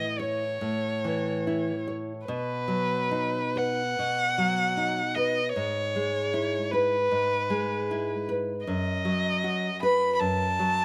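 A single bowed violin leads this lyrical, serene romantic duo, its rich tone shaped by vibrato, a soft attack and expressive portamento as it sings a melody between B4 and B5. Beneath it, a fingerpicked nylon-string guitar supplies a warm, deep classical accompaniment ranging from F#2 to C#5, and both instruments sit up front and play together from 0.0 to 10.8 s. The pulse moves freely in rubato at roughly 65-79 BPM in 4/4, unfolding over a harmonic path of A, B, E/G# and B7/F#. Light reverb adds a gentle halo to an open-air recording that carries little sense of a room. This short fragment is taken from a longer piece.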